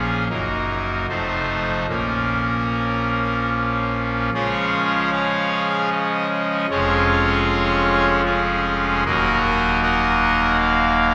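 A pipe organ on its trumpet stop opens this grave, solemn chorale-style classical piece, playing alone and placed up front with a brassy, bright tone and an audible chiff at the start of each pipe's speech. The music moves in 3/4 with uneven beats and a free, rubato feel, and the baroque voicing spans from deep pedal notes up into the upper treble. The opening phrase passes through Ebm/Gb, F7 and Bbm in a minor-mode cadence. At 4.3 s the harmony brightens to a major tonality, settling on Db and Db/F before turning to Ebm at 9.1 s. A long, wet church reverb surrounds the organ and lets each chord hang in the space. The passage is cut from a longer work and ends at 11.1 s.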